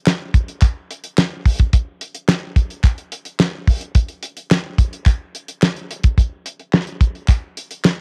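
A small-room home recording with a cassette character frames this short, slick funk cut in straight 4/4. A damped 70s drum kit sits up front from 0.1 to 8.0 seconds, its dry, tape-tinged hi-hat, tight kick and fat snare carrying the groove. Group handclaps, human and crisp, sit lower in the mix throughout the same span.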